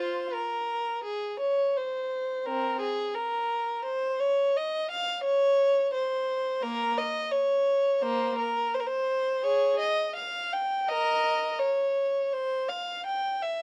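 A single bowed violin opens at 0.0 seconds and carries this solemn, flowing classical fragment on its own, cut from a longer baroque-style suite movement for unaccompanied violin. The tempo sits around 85 BPM in 4/4, though the playing is rubato, so the pulse bends with the phrasing. The violin ranges from Bb3 up to G5, played expressively by one player with vibrato and portamento, and its upper register has a smooth top. It sits up front in a dark, warm production with light reverb around it. The passage runs as one continuous section until it breaks off at 13.6 seconds.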